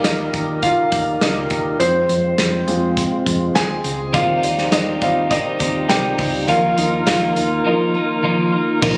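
A straight 4/4 pulse at 103 BPM drives this dramatic, earnest piece of piano-driven pop, cut from a longer piece and tuned slightly low to A4 = 438 Hz. The loose indie drum kit sits up front, with its punchy kick, medium-tuned snare, hi-hat and crash caught in an acoustic studio-room sound. A dark, round hollow-body short-scale bass, fingered and amped, anchors the low end. A concert grand piano carries the featured part from the start, intimate and natural, with deep bass and audible action noise, while a fat tonewheel organ holds sustained chords beneath it with light overdrive, third-harmonic percussion, vibrato and a slow rotary speaker. The chords open on Eb and move to Fm at 1.8 seconds. At 4.1 seconds, as the harmony shifts to Cm/Eb, a clean, compressed twelve-string electric guitar enters up front with a picked riff in a warm tone, and the progression settles on Ebsus2. The sound is that of a phone held in a small club, with light room reverb.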